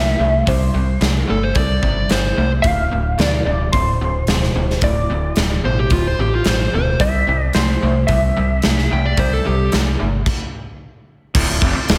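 A lightly driven lead guitar, slightly broken-up and compressed with wah and slapback echo, carries the melody over a driving, brooding classic rock groove at 110 BPM, joined at 1.3 s by a smooth, overdriven second lead line. Beneath them a raw garage guitar with spring reverb and a very quiet hollow-body guitar play riffs over a round, deep picked bass, while a big, punchy rock kit with bright cymbals kicks in at 0.5 s. After a stop near 10.3 s, a thick tonewheel organ with key click and slow rotary speaker enters at 11.4 s on a Dm chord, all set in a lush hall for an arena-sized sound in this short excerpt from a longer piece.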